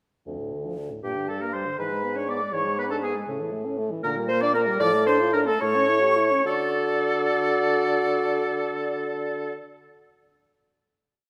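In a straight 6/8, this complete classical-period movement for wind quintet sounds urgent and dramatic, moving quickly before it broadens and slows into a closing chord at 6.5 seconds. At 0.3 seconds the dark bassoon opens with bass on the beats and sustained bass, while the French horn plays flowing broken chords and sustained chords. At 1.0 seconds the rest of the ensemble enters. The close, hollow concert flute carries the tune with airy vibrato and a crisp attack, doubling it in unison and at the octave. The clear oboe, sounding more distant with vibrato, doubles the tune in unison and in thirds, and the clarinet, warm like the horn, adds a roomy melodic line of its own. A moderate scoring-stage reverb gives the group a shared sense of space.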